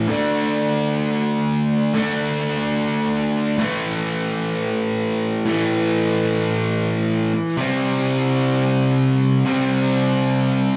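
An overdriven electric guitar plays alone and up front, its picked, doubled tone sounding warm and gritty as it moves between A2 and D4. This is aggressive, driving rock in free time, cut from a longer piece. The guitar moves through power chords on D5, then A5 at 3.6 seconds and C5 at 7.6 seconds, across a single section lasting about 10.8 seconds. The performance comes from a live gig heard through the venue's PA, wrapped in a moderate club reverb that gives the guitar a roomy edge. The instrument is tuned slightly sharp, with A4 set at 443 Hz.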